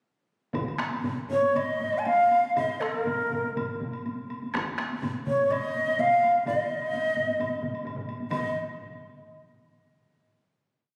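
This short, complete Japanese traditional piece opens at 0.5 s with four taiko ensembles and a woodblock striking together. Two of the taiko groups use hard sticks, one close and dry and the other close but in the background. The other two use heavy sticks, one close and dry and one in a small room further back. Some of the taiko groups repeat a pattern while others play taiko phrases, and the woody woodblock repeats its own pattern in a live room. At 1.3 s a breathy, bamboo-toned shakuhachi enters up front with a soft attack and vibrato, singing an ornamented modal melody between Bb4 and Ab5 in Eb suspended pentatonic. The straight 4/4 pulse keeps speeding up from 118 to 139 BPM over the whole piece, giving it a driving, powerful mood, captured on a phone in a wet concert hall before it settles on a final note from 8.3 s.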